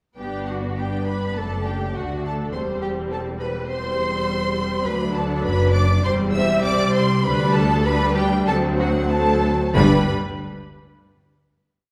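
In a rubato 4/4 at 91-104 BPM that slows from 3.7 s, this lively, graceful classical-period piece for string orchestra in G major has a lush, expressive violin section singing the melody while a second violin section doubles the tune at the octave, rich violas with portamento play chords in the rhythm of the tune, smooth cellos sustain the bass with passing notes, and bright, focused double basses double the bass line, all heard from further back in a wet scoring-stage reverb before settling onto a final chord at 9.8 s.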